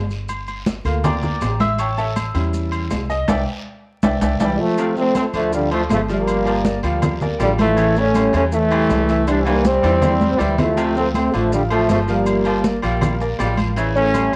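Fiery and danceable, this salsa excerpt in D minor at 160 BPM opens with woody, thumpy pizzicato upright bass, close ringing congas, raspy guiro, grainy maracas and vintage metal-shell agogo bells and timbales under a bright, slightly detuned upright piano that takes a solo until 4.8 seconds, with a band accent and drum fill before a present trombone section enters up front at 4.4 seconds with delay and light vibrato, joined by a clear baritone saxophone in the background, all colored by cassette home-recording character and vinyl crackle over a Gm7, A7, Cadd9, Dm7 progression.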